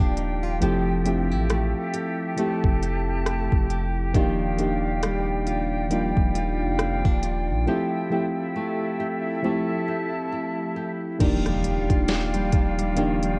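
Opening on a soft, round FM electric piano with chorus, pure vibrato-laden flute chords, bright fingerpicked nylon-string guitar arpeggios with tape echo and a dark, sine-toned 808 bass, this tender, dreamy contemporary R&B excerpt at 68 BPM with a swung 16th-note feel drifts between Ebmaj9 and Fmaj9. A gritty, up-front sampled drum kit with a knocking kick and deep snare joins at 0.2 seconds, a break arrives at 7.7 seconds, and a very quiet electronic impact lands at 11.2 seconds, with the whole mix set in light digital reverb and warbling cassette-tape pitch drift.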